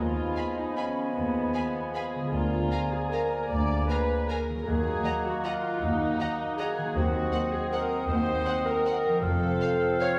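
Sweeping and dark, this brief classical excerpt in a rubato 3/4 sets an up-front, pure viola section over woody double basses and lush cellos, with airy flutes, a distant oboe, clarinet and bassoon, a shadowy horn section's sustained chords and a ringing harp's arpeggios, while soft sul tasto violins enter at 0.4 s to carry a rich melody and a smooth-topped second line in the background, all heard from further back in a recital hall.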